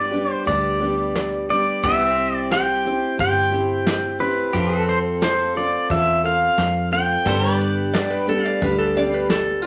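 A twangy pedal steel guitar carries the melody from the start, up front, over a bright picked steel-string acoustic guitar with audible finger squeak and a second, brighter pedal steel holding sustained chords beneath, both steel parts shaped with volume swells and slide. This is a nostalgic, heartfelt slice of honky-tonk and classic country at 88 BPM in a straight 4/4, set in G mixolydian and moving from G through C and F before returning to G at 7.3 seconds. A vintage foam-muted electric bass gives a round, punchy low end, while a soft brush drum kit enters at 0.1 seconds with a dark, rolled-off top, a punchy kick and a medium-tuned snare in a small room. At 7.9 seconds a lap resonator guitar joins with a metallic, nasal second line played with fingerpicks and slide. A wet studio reverb gives the short cut a gentle sense of space.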